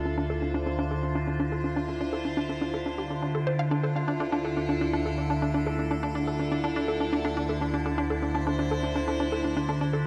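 A morphing wavetable pad sits up front on a sustained D minor add-nine chord, with a phaser and its own reverb, over a warbling, vintage analog drone on D2 that carries chorus and tube saturation. From 0.1 seconds a hollow, bouncy square-wave pluck with detuning, a sub octave, chorus and delay plays a bright riff, while a filter sweep runs through the synth arpeggio sound. This mysterious, hypnotic slice of sequencer-driven space music moves at 123 BPM in a straight 4/4, and the dreamy mix is soaked in a long cathedral reverb.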